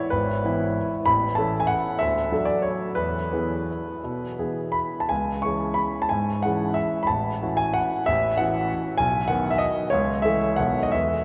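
A classical piano waltz in triple time, this short passage cut from a longer piece has an elegant, playful character, and its rubato lets the pulse stretch and give. A clear grand piano plays solo throughout the 11.2 seconds, ranging from deep bass up to bright upper notes. The instrument sits up front and intimate, its polished tone carrying long sustain, with the mechanical action audible beneath the notes. That close, present sound is set inside a vast, echoing space, where a wet cathedral reverb lets each chord bloom and linger. The harmony moves through major and minor colours before settling on a dominant seventh that leaves the phrase suspended, awaiting what follows.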